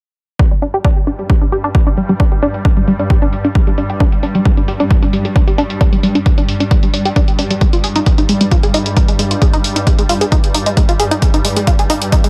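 Punchy, overdriven analog kick sits up front in a light digital ambience on this relentless, dark slice of driving peak-time techno at 133 BPM in a straight 4/4, where a tight sawtooth synth riff with chorus, phaser, tape echo and sidechain pumping runs from 0.4 seconds beside an overdriven, low-passed hi-hat, a swarming, warbling granular drone enters at 0.7 seconds, filter sweeps move across the drums and synth, and the harmony shifts from G5 to Ab5 at 7.6 seconds.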